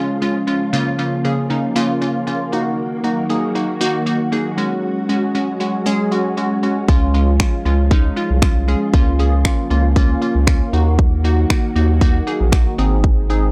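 Euphoric and carefree, this dance-pop excerpt moves at 117 BPM in a straight 4/4, opening with a glassy, detuned wavetable pluck carrying chorus and sidechain pumping over a silky, warbling string machine holding soft chords with ensemble chorus, cycling through Db, Bbm/Db, Ebm and Gbsus2. At 6.9 s a round, deep analog bass and a punchy house kit of kick and finger snaps arrive up front, the bass also pumping to the sidechain as the progression repeats and closes on Ab. The sound is dry and gritty, with little reverb.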